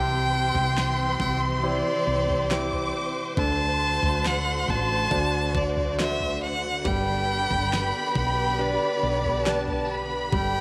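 Pop ballad at 69 BPM in C major, tender and emotional, where a rich, focused solo violin with vibrato and tape echo carries the melody up front over a lush violin section's high second line, a clear concert grand piano with deep bass, a warm string section playing sustained chords with portamento, a woody, round fretless electric bass touched with subtle chorus, and a produced electronic drum kit with knocking kick and fat snare entering at 0.5 s in the background, all set in a moderate echo chamber reverb as the harmony moves from C through D7 to G in this short cut from a longer piece.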